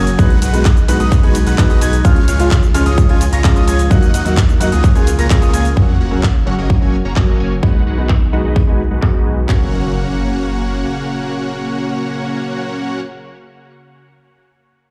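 Festival progressive house at 129 BPM in F# major, this anthemic, uplifting excerpt from a longer piece opens on a drop where a punchy, overdriven kick and handclaps sit up front alongside filtered hi-hat, ride and shaker, a deep saturated sine sub bass, a huge detuned supersaw riff, dark baby grand arpeggios with vintage 12-bit grit that stop at 5.7 s, a soft felt-muted upright piano with audible action noise and a lush, warbling pad. The supersaw, sub bass and pianos pump under sidechain, with dub echo on the pianos and supersaw, all in a large studio reverb. A very quiet sub drop and impact arrive at 5.8 s with filter sweeps on the drums and supersaw. The drums stop by 9.6 s as the upright piano, pad and supersaw carry on over chords from B6 through C#, D#m and C#6 back to F#.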